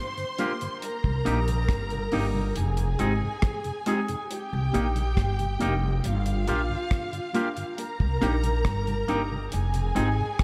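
A small room's light reverb frames this bittersweet, longing lovers rock reggae, cut from a longer piece and moving at an unhurried 69 BPM in straight 4/4 in C minor over Gm7, Cm7 and Fm7 chords. Up front, a dark, dry reggae drum kit with a tight kick, rim clicks and hi-hat sits beside a woody, growly pizzicato upright bass with tube saturation that enters at 1.1 seconds. A twangy, clean picked electric guitar plays stabs through spring reverb, while a dreamy, warbling FM electric piano with a soft pad layer and chorus and a mellow, flute-like tonewheel organ through a slow rotary speaker hang in the background, and a lush bowed string section with expressive vibrato and tape echo carries the second line.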